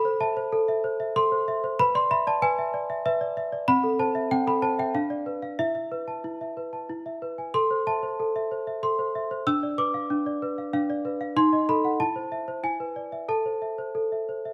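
Wistful and a little eerie, this short passage from a longer classical lullaby sits in A minor at 94 BPM in a straight 3/4. A worn celesta plays solo throughout, up front and spanning C4 to E6, its bell-like, dark tone struck by hard felt hammers and sounding slightly out of tune, all bathed in a damp stone-room reverb that gives the live performance a haunted glow. The harmony drifts through diminished chords, including a D#dim7 at 11.4 seconds, before settling back on A minor at 13.3 seconds.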